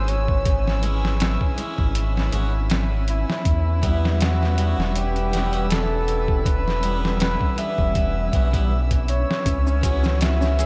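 A slow trip hop groove at 80 BPM in 4/4, with a light 16th-note swing, rides on a gritty, pitched-down boom bap sampler kit whose thumpy kick, medium-tuned snare and hi-hat sit up front alongside a deep, round analog bass. Over this brooding, cinematic bed, a bucket-muted trumpet carries the melody in a veiled, jazz-style voice with vibrato and scooped notes, trailed by tape echo. A rich violin section with a reedy gut-string tone holds sustained chords, while a close, dry harpsichord enters at 0.8 seconds with plucked accompaniment colored by harmonic tremolo and tape echo. A flickering, granular texture hovers in the background, and the harmony moves from C#m to Em and back to C#m. At 9.5 seconds, a soft felt-muted upright piano adds mellow arpeggios and hard-handed maracas join, all within a dreamy mix soaked in cathedral reverb in this fragment of a longer piece.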